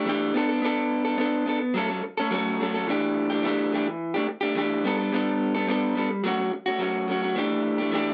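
A lone electric guitar, played through a small old amp, carries this brief upbeat rock fragment with a jangly, slightly broken-up, lo-fi tone that sits compressed and up front in a moderate studio room. Picked in a steady, straight four, it moves through Bm7 and F#m before settling on A7sus4 at 2.9 seconds, then passes through Gadd9 and F#m back to A7sus4 as the phrase repeats and the clip is cut off at 8.1 seconds.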